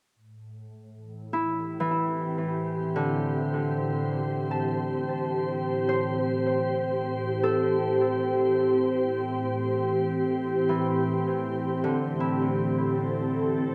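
A glassy, warbling FM pad holds sustained, chorused chords up front from 0.6 s, joined at 1.3 s by ringing, fingerpicked Celtic harp arpeggios with tape echo that fade out across this serene, reflective ambient fragment at 78 BPM in A minor, resting on Am7 in a vast cathedral space.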